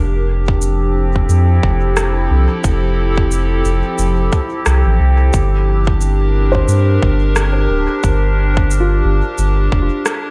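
Ambient dub at 89 BPM in G dorian with a gentle 16th-note swing, hazy and deep, cut from a longer piece: a warbling, nostalgic pad with chorus, phaser and its own reverb holds sustained chords over Fmaj7 and then Gm, a round, soft sub bass sits up front, an overdriven, tight electronic kick and an overdriven shaker and rim click with dub echo carry the beat in a large-room sound, and from 6.5 seconds a felt-muted upright piano adds dark, intimate arpeggios with tape echo in the background, all under light reverb and a dulled top end.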